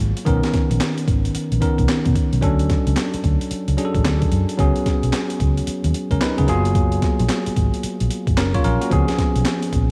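A swung 16th-note groove at 111 BPM drives this bouncy, flirty new jack swing R&B excerpt in F# major, where a gritty, thumpy sampler-style breakbeat kit of kick, medium-tuned snare, hi-hat and handclaps sits up front beside a bright, bell-like tine electric piano with a cassette-tape tint, while a dark, round, foam-muted fingered electric bass punches underneath through chords moving from Bmaj9 to Dmaj7, C#7sus4, F#maj9 and C#7, all in a light digital ambience from a home cassette recording.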